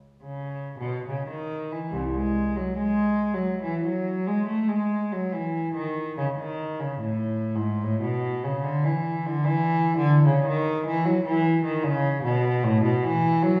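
This classical, baroque-style suite movement for unaccompanied cello moves at about 73 BPM in 4/4, with uneven beats and a rubato feel that gives its C# minor material a dance-like, radiant character. A single bowed cello carries the whole passage from 0.2 to 13.6 seconds, ranging from B#1 up to A3 in a period style tuned to A4 = 441 Hz. Its warm gut-string tone is nasal and reedy, giving the line a distinctly old-world flavor. The instrument is placed up front, yet a wet recital hall reverb with a 1.4-second decay makes the room sound as if heard from further back. This short excerpt is cut from a longer piece and stays within a single section throughout.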